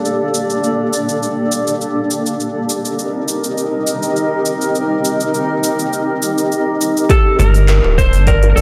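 A cloudy, wave-folded granular pad holds sustained chords up front through this hypnotic organic downtempo excerpt in G minor at 102 BPM, moving from Gmadd9 to Cm7 with built-in reverb and sidechain pumping. Beneath it, an overdriven electronic kit of crisp hi-hat, cabasa and handclaps sits low with a light 16th-note swing. At 7.1 seconds a dark, clean lap steel slide melody and a woody, band-limited kalimba arpeggio enter with tape echo, alongside a deep, overdriven electronic kick; a round sine sub bass pumps in up front at 7.4 seconds, while bright vintage congas and bongos with analog delay sit in the background of the echo-heavy mix and its moderate plate reverb.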